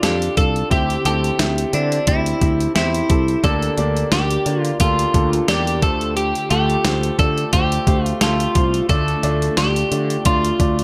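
1980s-style pop with an urgent, moody cast, this short excerpt moves at a relaxed pace in four with a light swing on the sixteenths. A bright, twangy twelve-string electric guitar carries the melody, clean, picked and compressed, sitting up front in the mix. Beneath it a grand piano supplies accompaniment with an intimate, natural tone, long sustain and audible action noise, while a fretless electric bass holds the low end with a growly, direct sound. A 12-bit digital drum machine drives hi-hat, a thumpy kick and a medium-tuned snare, its sampler-style kit tape-softened and re-recorded in a small room so it sits close to the listener. The harmony stays anchored over D, shifting from Dm through C/D and Gm/D to Fadd9/D, and the whole piece is framed by light reverb and digital ambience.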